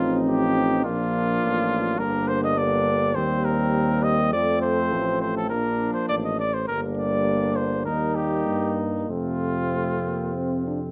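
Classical brass quintet writing sets a noble, stately mood in this short excerpt cut from a longer piece, with uneven beats and rubato giving the pulse a flexible feel. A mellow trumpet carries the melody up front with light vibrato and a smooth top, while a flugelhorn plays a second line beneath it, its tone punchy yet distant and roomy. French horn and trombone supply the accompaniment, the horn smooth with light vibrato and the trombone close-miked but sitting in the background with a warm tone and light vibrato. A tuba anchors the bass from a distance, its roomy tone carrying light vibrato. All five instruments sound together from the opening through to about 10.9 seconds, moving through a stately progression that returns to F at 9.1 seconds, set in a moderate large studio reverb.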